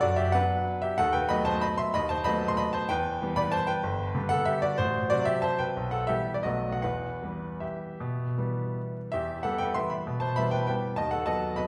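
In a freely rubato 3/4 lilt, this nostalgic, bittersweet classical waltz for solo baby grand piano, cut from a longer piece, sounds clear, intimate and natural, with long sustain and audible action noise up front in a wet recital hall reverb, moving from its opening theme into a contrasting section at 9.1 s.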